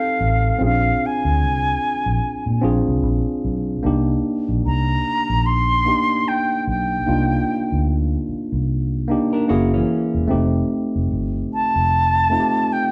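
Silky and bittersweet, this lush 1970s-style soul passage in C minor moves at an unhurried 74 BPM in 4/4 with swung sixteenths, cut from a longer piece. An airy silver concert flute with vibrato carries the melody over a worn, slightly out-of-tune tine electric piano and a round, foam-muted fingered electric bass that sits punchy and up front. A dark semi-hollow electric guitar with spring reverb adds a brief riff from 9.3 to 10.3 seconds, all heard as a band playing live in one room with moderate large studio reverb.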